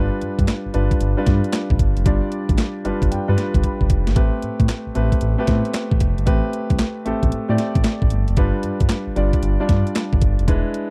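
A slick new jack swing excerpt opens with a dark, gliding sawtooth synth bass with vibrato and an up-front concert grand piano with deep lows playing over G7 and Am9, and a punchy, overdriven 12-bit drum machine with a thumpy kick, medium-tuned snare, handclaps and hi-hat comes in just after to drive the groove, with a piano fill at 2.6 seconds and a drum fill at 3.6 seconds in a dry, close studio sound.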